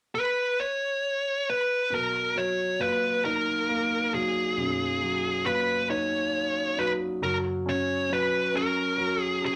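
In a slow, straight 6/8 at 45 BPM in B major, this heartfelt, romantic pop excerpt opens with a fuzz-distorted, picked lead guitar carrying the melody alone from 0.1 s until a woody, intimate upright piano with audible action noise and long sustain joins up front at 1.9 s, alongside a dark, round, foam-muted electric bass in the background, as the harmony settles on Bmaj7 before moving to F#5, all in a wet studio reverb.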